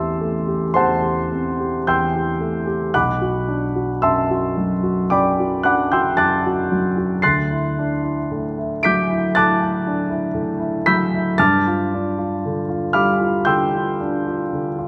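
Impressionist classical solo piano, wistful and nocturnal, drifts at a slow 57 BPM in 4/4 with a free, rubato feel across this short fragment of a longer piece. A warm, polished baby grand sits up front with long sustain, spanning from A1 to D7 as its harmony moves through Am7, Bm7, D9 and G9, the last arriving at 11.4 seconds. A wet recital-hall reverb surrounds it, with a faint mains hum in the background.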